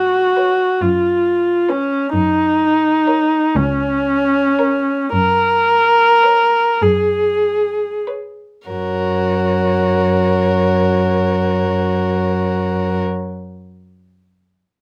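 A muted viola and cello open this serene fragment of a slow, romantic string quartet movement, both bowed with light vibrato and set up front, the cello supplying the bass beneath the viola's accompaniment. At 0.4 s two muted violins join, each a single player: one carries the melody with vibrato, portamento and a smooth top, while the other adds a second line. All four instruments play con sordino, giving the ensemble a dark, veiled colour. The lilting triple-based metre moves with flexible rubato, and the pulse broadens steadily through the opening passage. A new passage begins at 8.7 s, settling the music back onto its home harmony, and a light reverb softly surrounds the intimate sound.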